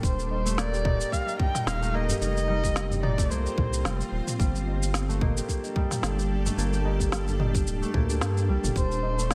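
Under light reverb and a hint of studio ambience, this earthy, mystical organic downtempo fragment in G minor moves at 110 BPM with a gentle 16th-note swing, as a dark, bowed kamancheh sings an expressive melody with vibrato, portamento and delay until 4.1 seconds and returns at 8.8 seconds, over a cloudy, evolving granular pad with sidechain pumping, thumb-plucked concert harp arpeggios, a round, deep analog bass up front, a tight electronic kick, a produced kit of shaker, woody snare and toms, and a high-tuned, ringing tabla sitting distant in the background, all moving through Eb, Fsus4 and Gmadd9.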